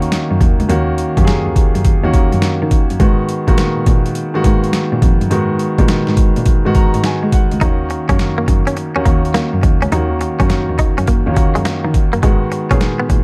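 A dark, warm production with digital ambience frames this bouncy, confident new jack swing excerpt in Eb minor, moving at 104 BPM with a swung sixteenth feel over Ebm7 and Abm7 chords. Gritty, pitched-down, overdriven sampler drums sit up front with a thumpy kick, a medium-tuned snare and hi-hat, while an open, long-sustaining baby grand piano accompanies and a single bowed cello with vibrato carries the bass from 0.3 seconds. The piano plays a fill at 6.5 seconds, and at 7.6 seconds a bright, twangy clean electric guitar enters with a picked riff touched by subtle chorus.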